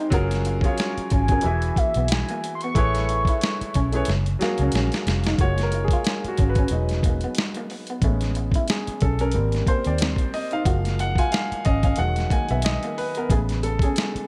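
Soulful and sensual, this neo-soul R&B groove moves at 91 BPM in 4/4 with a swung sixteenth feel in F# major, drifting through lush major-ninth chords. A gritty, compressed boom bap drum kit sits up front with a thumpy kick and a medium-tuned snare that carries the sound of a large room, while a dark, round, foam-muted electric bass supplies a punchy low end. A clear, woody upright piano is close and intimate, its action noise audible and its notes ringing with long sustain under plate reverb, and a bright, twangy, slightly broken-up electric guitar adds a lo-fi second line in the background, washed in spring and plate reverb with tape echo. From 1.1 to 3.9 seconds a mellow, horn-like sawtooth synth lead carries the melody with a soft attack, vibrato, a filter sweep, chorus and phaser. After a drum fill, the piano takes a polished solo from 5.4 seconds to the end of this section cut from a longer piece, all set in a dark, warm production with light reverb.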